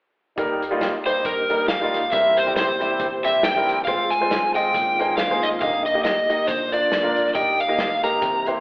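Uptempo gospel in Eb major at 138 BPM with a swung 4/4 feel, hopeful and jubilant, where a dark, overdriven electric slide guitar carries the melody up front from 1.1 s over an intimate grand piano with audible action noise, a smooth tonewheel organ holding sustained chords in the background through a slow rotary speaker with key click, a woody, thumpy gut-string upright bass and a punchy, rolled-off soul drum kit, the recording set in a wet church-like hall reverb and filtered to a thin telephone tone in this short piece cut from a longer performance.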